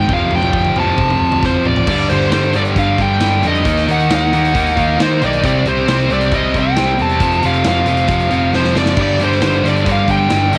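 A smooth, overdriven lead guitar sits up front carrying the melody, its tone colored by cassette tape and analog delay, in this angsty, cathartic fragment of quiet-loud alternative rock in G minor at 135 BPM. Beneath it, a compressed, distorted electric guitar and a scooped high-gain guitar tucked in the background play the riff, joined by a growly, overdriven picked bass and a big, natural-sounding acoustic kit with bright cymbals, a tight kick and drum fills at 1.4 and 8.5 seconds. At 9.0 seconds a very quiet, double-tracked distorted guitar adds another riff, all captured as a lightly reverberant home recording on cassette.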